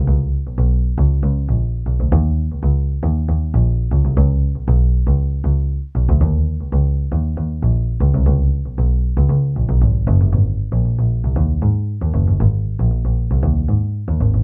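Funky and playful, this short funk cut features a single double bass played with the bow, standing alone and up front for the full 14.4 seconds in a straight 4/4 groove. Its tone is clear yet boxy, with an airy bow, an intense edge and vibrato, moving through a low register from Gb1 to Ab2. The dry, close sound of a 1970s-style studio carries a light touch of reverb, and the passage shifts into a new section at 10.3 seconds.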